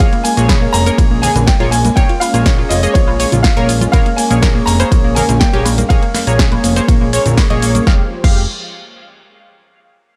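Progressive house at 122 BPM in 4/4, this short excerpt cut from a longer piece feels expansive and driving, sitting on a drop over a Bbm7 chord before moving to Fmadd9 at 7.9 seconds. A punchy electronic kick sits up front, joined by a house kit with a punchy snare, bright hi-hats, ride, crash and shaker, while ringing woodblock and soft-handed congas sit close but in the background. Underneath, a fat, saturated analog bass built from detuned sawtooth and square waves holds the low end between F1 and Bb1, pumping against the kick. A round, full-bodied analog pluck plays arpeggios with a noise layer and dub echo, and a retro, glossy chorused polysynth adds pulse-width stabs with a filter sweep, both breathing with sidechain pumping. A smooth, mellow pad holds sustained chords in the background, and a clear, slightly boxy grand piano carries the melody between Db5 and Bb5 with delay until 7.3 seconds. 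The mix is dry and close, with little reverb beyond a small room ambience on the drums.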